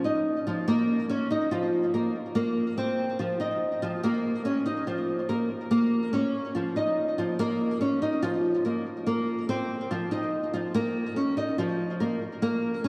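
Brooding and eerie, this short excerpt of half-time hip hop moves at 143 BPM in 4/4, cut from a longer piece. A lone flamenco guitar carries everything, fingerpicked up front with a dark acoustic tone, its range spanning F3 to Eb5 and the small squeak of fingers on strings audible. Lush chorus and delay thicken the guitar, while a cathedral reverb with a 5.5-second decay soaks the mix in a dreamy haze. The harmony sways between Bbm and Fsus4, returning to Bbm at 5.7 seconds and settling on Fsus4 at 9.1 seconds before the clip ends at 12.9 seconds.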